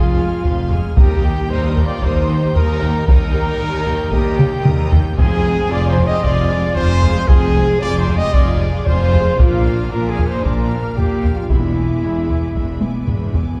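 Epic and heroic, this cinematic orchestral film-score excerpt moves at 114 BPM in F dorian, with a lush violin section carrying the melody in the background over chords of Fm, Eb, Bb and E7, while an airy flute section and a smooth symphonic violin section add higher second lines. Dark, expressive violas supply accompaniment, a mellow French horn section holds sustained chords, and a close-miked solo trumpet punctuates with stabs, all grounded by vibrato-rich cellos and distant double basses on the bass. A taiko ensemble struck with hard sticks enters at 0.4 seconds, close and dry, with fills at 4.4 and 12.8 seconds, and the whole is heard from further back in a reverberant scoring stage.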